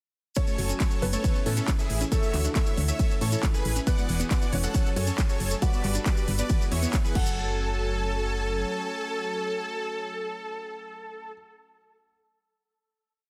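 Soaring and emotional, this uplifting trance piece drives at 137 BPM in F# minor, launching straight into a drop at 0.4 seconds that runs until 7.4 seconds before a final hit closes it out. A huge, thick supersaw carries a repeating riff melody in thirds and sixths, pumping with sidechain and trailed by delay. A soft, felt-muted upright piano repeats the riff in octaves in the background through a digital delay, and a very quiet, catchy plucky lead doubles the anthem part in unison with vibrato and a moving notch. A lush, airy pad holds bright sustained chords with chorus and pumping, while a full-bodied pluck runs an eight-step arpeggio with dub echo beneath harmony that moves from F#madd9 through A, Dadd9, Eadd9 and Gadd9. Up front, an overdriven, heavy electronic kick keeps four-on-the-floor time alongside a programmed kit of claps, smooth hats, ride and crash, joined by grainy hand-played maracas in sixteenths and a punchy, round FM bass playing dark, decaying off-beat notes, and the mix sits in digital ambience with a dense, heavily limited modern master.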